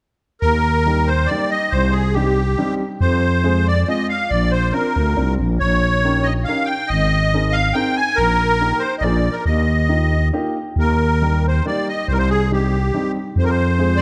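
This musette waltz in triple time moves with a rubato feel and a whirling, nostalgic mood, heard as a short excerpt from a longer piece. The musette accordion carries the melody from 0.4 seconds, its reedy, shimmering musette tuning sitting mid-forward and up front. A growling FM bass enters at the same moment, thick and sustained with a fast attack and a sine-like core, placed prominently in the mix. From 0.9 seconds a warm, woody, natural upright piano adds accompaniment alongside the two. The harmony passes from Eb through Cm and Fm toward Bbadd9, Abadd9 and a Bb7 before resolving to Ebadd9, then the opening phrase begins again at 10.8 seconds. A moderate scoring-stage reverb gives the ensemble a roomy, cinematic glow.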